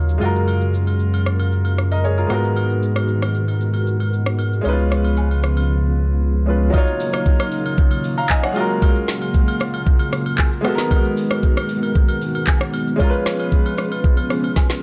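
A straight 4/4 amapiano groove at 115 BPM rides on an up-front, tape-warm electronic kit with a knocking kick, woody snare, handclaps, rim clicks and shaker, while faint agogo bells and woodblock add an acoustic small-room touch; the kit drops out from 5.7 to 6.7 seconds and closes with a fill at 14.6 seconds. A round, deep sine sub bass anchors the soulful opening until 6.7 seconds, under a clear grand piano and a dark, full-bodied string-machine cello pad that pumps with sidechain ducking through an ensemble chorus. The harmony cycles through Gbmaj9, Abm9, Db7 and Ebm9, in a dry, deep-toned mix cut from a longer piece.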